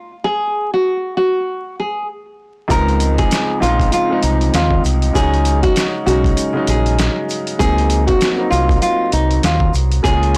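Swung sixteenths at 98 BPM in 4/4 drive this nostalgic, confident boom-bap hip-hop excerpt in Db major, where a fingerpicked, full-bodied nylon-string guitar with finger squeak carries the melody alone from 0.2 seconds until, at 2.7 seconds, a gritty, pitched-down sampler-style drum kit with thumpy kick and medium-tuned snare arrives alongside a round, dark fingered electric bass with transformer saturation, a mellow, vintage grand piano with cassette-tape coloring over Dbmaj9, Cb6 and Ebm13 chords, and a close, dry tube shaker in the background, the whole mix blown-out and overdriven with vinyl crackle and little reverb.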